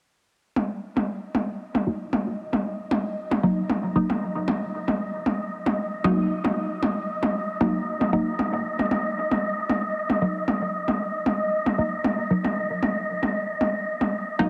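A muted, detuned dub chord stab carries this cavernous, nocturnal dub techno piece, entering at 1.9 s with a fast, decaying filter-plucked attack shaped by a filter sweep, phaser and dub echo. Layered, tape-warm electronic toms with their own dub echo open the cut at 0.6 s, and a breathy, wind-like noise texture with a slow attack and built-in reverb hovers up front from 1.3 s. The mix sits in a huge ambient reverb over a lightly swung 16th-note feel.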